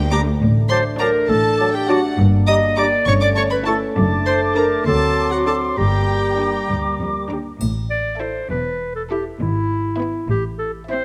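Cinematic, playful and whimsical film cue in 6/8 at 67 BPM, magical and mischievous in mood, moving from G minor into A minor in this excerpt. A buzzing, woody marimba and a rich, expressive violin section carry the melody, while an up-front clarinet, a clear oboe, an airy, distant flute ensemble and a bright violin section in the background add second lines. Beneath them sit dark, soft-attack French horn chords, a mellow bassoon, smooth-topped violas, lush cellos and close, bowed double basses, in a moderate concert hall reverb; the marimba falls away at 6.6 s, the horns, oboe, flutes and bassoon at 7.3 s, and a triangle enters at 7.6 s as the key shifts.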